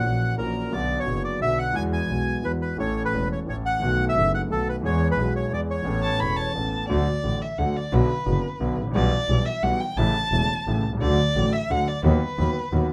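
A moderate club ambience surrounds this short, passionate and playful tango cut from a longer piece, taken at 176 BPM in a rubato 3/4 and moving from A major to D major at 6.9 seconds. A reedy, smooth bandoneon carries the melody up front until 6.5 seconds, over a natural-sounding grand piano with deep bass and a bowed double bass that is biting and earthy with light vibrato. A dark, close violin enters at 6.0 seconds and takes an expressive solo from 6.9 seconds, with soft attacks, vibrato and portamento.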